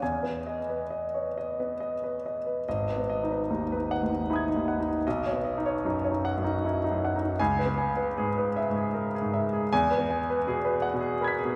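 A clear, polished grand piano carries this wistful, nocturnal impressionist solo, its long sustain and audible action noise lending an intimate feel as it ranges from G#1 to B6. The playing moves in a rubato 3/4 between 66 and 83 BPM in G# minor, opening on Emaj7 before turning at 2.7 s to a passage that drifts through G#m7, Badd9 and C#m7 before reaching Eadd9. A wet concert-hall reverb places the listener further back in the room, and the fragment is cut from a longer piece.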